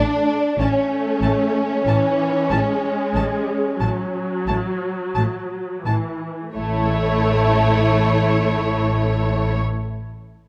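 A smooth, even violin section stands out most, carrying a lush, up-front second line in this slow, lyrical romantic movement for string orchestra, taken from a longer piece. Above it, a higher violin section sings the melody with soft attacks, expressive vibrato and a rich tone, while violas fill the middle with warm, bowed accompaniment marked by vibrato and portamento. Far in the background, cellos with a clear, focused sound hold the bass together with double basses whose light vibrato keeps them sounding rich, smooth and even. The pulse moves at 28-34 dotted-quarter beats per minute in 12/8 with a rubato feel, easing back through the first 6.6 seconds before a new section begins, all resting on an A major harmony. A moderate recital-hall reverb gives the ensemble a gentle, spacious bloom.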